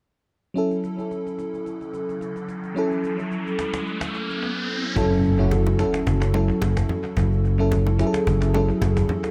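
A swung 4/4 groove at 109 BPM anchors this deep, soulful amapiano excerpt in F# minor, cut from a longer piece and opening on an F#m7 chord. A lush, dreamy FM electric piano layered with a soft pad carries the accompaniment from 0.5 seconds, its detuned, warbling vintage tone sitting up front with chorus and analog delay. A snappy acoustic cajon played with hard hands joins almost at once, its sound roughened by 12-bit sampler grit and delay, while an electronic riser builds from 1.9 seconds toward a brief silent gap. At 5.0 seconds an impact lands as the second section begins, bringing in a dark, round, punchy fingered electric bass up front alongside ringing congas and bongos set close and dry in the background. Light reverb and small room ambience give the echo-heavy mix an intimate, hazy depth.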